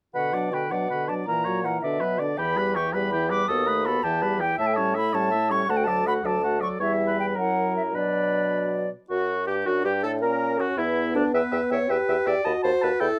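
All five wind quintet voices sound together from 0.1 s in this urgent, restless classical-period movement in B minor, cut from a longer piece, moving quickly in 6/8 at 108 dotted-quarter beats per minute: a pure, tongued concert flute carries the melody over an oboe second line with light vibrato, while a bright, close-miked clarinet and a roomy French horn supply accompaniment above a mellow bassoon bass, all captured by close, detailed microphones with light reverb.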